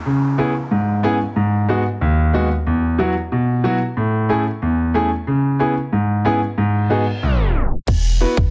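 Dancehall at 92 BPM in G# phrygian, this short cut from a longer piece feels tough and bouncy. An intimate grand piano with audible action noise and long sustain carries the accompaniment from 0.1 seconds, sitting up front with sidechain pumping as it moves through C#m7, G#m7, Esus2 and Amaj7. In the background, an electronic downlifter and reverse cymbal sweep through the opening and return at 6.8 seconds, while a tape stop drags the track down just before the turn. At 7.9 seconds a deep, punchy sine sub bass with a pitch-drop attack drops in alongside an electronic island pop drum kit, whose tight kick and crash cymbal hit up front, with soft clipping on the snare. The mix has light reverb and a dense, heavily limited modern master.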